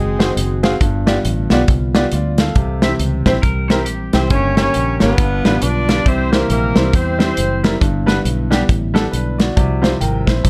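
A breathy, jazz-style tenor saxophone with light vibrato and scooped notes carries the melody with a clear, vintage horn section in this solemn, fervent uptempo gospel at 137 BPM in swung 4/4; both play a brief opening figure, with the saxophone returning at 4.1 seconds and the horns at 4.2 seconds. A round, foam-muted fingered bass and a soft, flute-like tonewheel organ through a slow rotary speaker hold the low end and sustained chords from the start, while a clear concert grand piano with deep bass and long sustain and a tight, up-front acoustic drum kit enter at 0.2 seconds. A bright, twangy picked guitar adds a short second line at 3.4 seconds, within a dark studio production whose harmony moves from dominant chords toward C.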